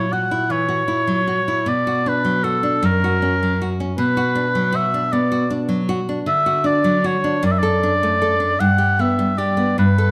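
Romantic chamber music for oboe and classical guitar, serene and lyrical, moving at a rubato 52 BPM in dotted quarters in 6/8, in a passage cut from a longer piece that begins in B minor and turns to D major at 6.3 s. The warm oboe carries the melody up front with a light vibrato, while the bright, fingerpicked nylon-string guitar supplies the accompaniment, also up front, through chords such as Bm, F#, D and Gmaj7. Close, detailed microphones capture the pair in a moderate recital hall reverb.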